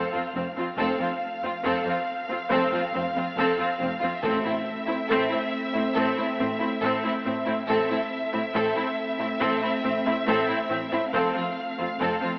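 Opening at 0.0 s, this dark, epic orchestral film-score fragment at 70 BPM in A minor builds as a warm, expressive violin melody floats over a smooth, even second violin line, a clear, focused viola and a rich cello section, with a lush double bass and a dark French horn section sustaining chords in the background, while close, dry timpani and a very quiet taiko ensemble strike at 4.2 s as the harmony shifts from F to A minor, the taiko returning at 11.1 s, the whole fragment set in concert hall reverb with an AM radio tint.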